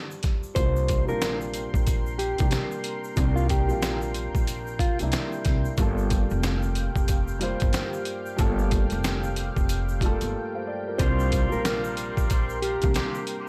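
Swung at 92 BPM in 4/4, this dark, tough boom-bap hip-hop excerpt rides a gritty, pitched-down sampler kit with a thumpy kick up front, a woody pizzicato upright bass, a dark, intimate grand piano with audible action noise, a faint grainy egg shaker, and a lush, warbling detuned pad under a clean, fingered electric guitar melody colored by phaser and delay, all moving between Gm7 and C7sus4, before a clear, distant saxophone section enters with tight stabs at 11.0 seconds.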